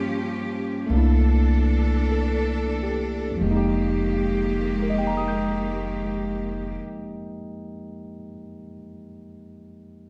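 A melancholic, intimate jazz ballad in a slow swing, cut from a longer piece, where a barky, clean tine electric piano through a combo amp sits up front with a woody, thumpy pizzicato upright bass and a focused, bowed chamber cello section holding sustained chords with vibrato, all set in a wet recital-hall reverb as the opening bars slow down before the bass stops at 6.7 s, the cellos at 6.8 s, and the piano continues until 10.1 s.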